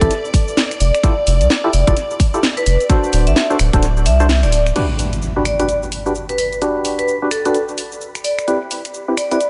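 A ringing, metallic vibraphone melody with delay leads this sunny, soulful two-step UK garage excerpt in G major at 129 BPM with a swung 16th feel, over hollow, chorused organ stabs that carry tape echo and a filter sweep through the first half, silky vintage string-machine chords pumping softly in the background, a deep, round dub sub bass up front until 4.7 seconds, a tight electronic kick that drops out at 3.8 seconds, and a tape-warm garage kit of cracking snare, hi-hat, finger snaps, cabasa and crash cymbal, with an electronic impact landing at 4.8 seconds in a light, echo-heavy mix.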